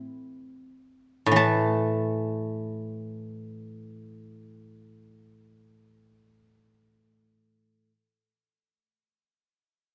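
A solo guzheng opens this brief fragment of traditional Chinese plucked-string music, slowing down through its first 1.4 seconds. Played with fingerpicks, the instrument has a silvery, ringing tone that sits up front, close and intimate. At 1.4 seconds a new passage begins and carries on to 6.5 seconds, unfolding in free time and moving across a span from A2 to A5. A moderate recital-hall reverberation surrounds each plucked note, giving the sound a gentle halo of space. The mood is elegant and quietly longing, shaped by the yu mode.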